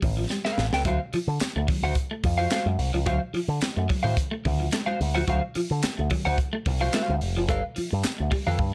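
Strutting and energetic, this funk excerpt rides a straight 4/4 groove over G9 and D7#9 chords. A crisp fusion drum kit sits up front in an airy studio room, its high-tuned snare and punchy kick joined by hi-hat and handclaps, with drum fills at 0.3 seconds and again at 8.6 seconds. The picked electric bass, direct and amped through an envelope filter, is the loudest part. It shares the foreground with a slightly broken-up, compressed electric guitar that adds analog chorus to its accompaniment from 0.4 seconds. A clean, picked electric guitar riff with tremolo sits lower in the mix, while very quiet congas with a thick, vintage skin and a jingly, saturated tambourine fill out the percussion. Light reverb gives the mix a touch of space.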